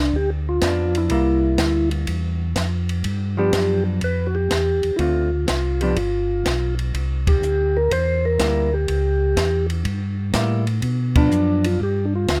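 Light reverb surrounds this swinging, soulful soul jazz organ trio in G mixolydian at 123 BPM, cut from a longer piece. Up front, a soft, flute-like tonewheel organ with third-harmonic percussion and key click carries the melody through a slow rotary speaker and plate reverb. Beneath it, a round, dark organ voice with vibrato holds the bass, a clean, picked hollow-body jazz guitar comps from 0.6 seconds, and a dry cocktail kit with a high-tuned snare and punchy kick swings along as the chords move through G7, C7, Dm7 and C#dim7, with band accents at 7.2 and 11.1 seconds.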